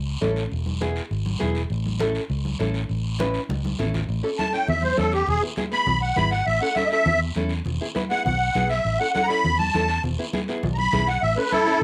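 A reedy musette accordion with a shimmering, wet tuning carries the melody in this sunny, danceable cumbia excerpt, entering at 4.4 s for a solo that runs to the end of the clip, close-miked, dry and up front with a cassette-tape tint. Underneath, a round, foam-muted fingered electric bass sits forward in the mix from 0.0 s, its amped tone anchoring a brisk 202 BPM in straight 4/4. A small, dark nylon-string guitar fingerpicks the accompaniment, also colored by cassette tape, while ringing, medium-tuned congas played with soft hands and a band-limited, raspy guiro fill out the percussion. The harmony simply alternates between A and E in A major, and a short fill at 3.5 s marks the move from the opening section into the accordion's feature. The whole has the homespun character of a cassette home recording, set in a moderate studio reverb.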